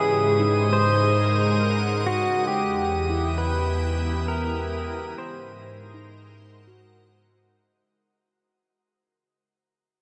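Ambient and reflective at a spacious 67 BPM in 3/4, this brief fragment fades out from 0.7 s to 7.9 s as a twangy, clean electric pedal steel guitar carries the up-front melody with slide, volume swells and delay over a bright, detuned organ-like pad holding sustained chords, a round sine sub bass, a very quiet nasal bowed-like drone with vibrato, a glassy harmonics texture drifting high above, and a ringing handpan playing arpeggios from 0.4 s, set within a wet shimmer reverb as the harmony moves from G#7 to Em and back.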